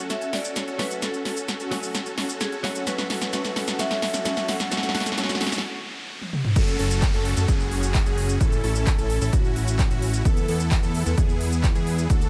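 Festival progressive house, emotional and euphoric, in which a build-up of huge, detuned supersaw chords with tape echo, a compressed clean electric guitar with lush chorus in the background, a bright, ringing vibraphone melody, a background riser and downlifter, and a big-room dance drum kit with a punchy snare, crisp hats, cabasa, claps, toms and fills reaches a short break at 5.6 seconds before the drop at 6.6 seconds brings in a fat, saturated, wave-folded analog bass pumping with sidechain and an up-front layered electronic kick, beneath a catchy, mellow plucky unison lead playing arpeggios, all set in light digital ambience.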